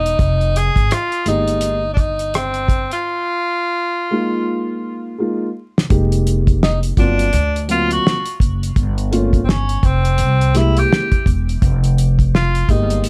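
Dry and close with a layer of vinyl crackle, this smoky, cool jazz-hop excerpt in F minor moves at 84 BPM with a swung sixteenth feel, as a clear, roomy tenor saxophone carries the melody over growly pizzicato upright bass and a cloth-damped, thuddy drum kit with a fat snare and tight kick, a dark, boxy upright piano joins at 1.3 seconds, and a break from 3.0 seconds ends in a drum fill before the Fm11 to D7alt, Gm7b5 and C7b13 changes of the second section.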